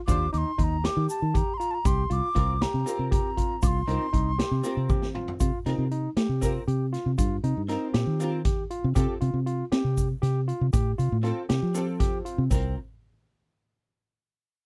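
A dry, close 1970s-style studio sound frames this tense, driving progressive instrumental in 7/8, cut from a longer piece. An airy, unsteady wooden flute with vibrato and a crisp attack carries the melody until 4.9 s, when the drums play a fill. Underneath, a compressed, hollow-body archtop guitar, double-tracked, plays clean picked accompaniment, a bright, barky tine electric piano plays arpeggios, and a round, foam-muted fingered bass sits up front beside a natural street-band drum kit with a boomy kick, while a grainy egg shaker ticks along in the background.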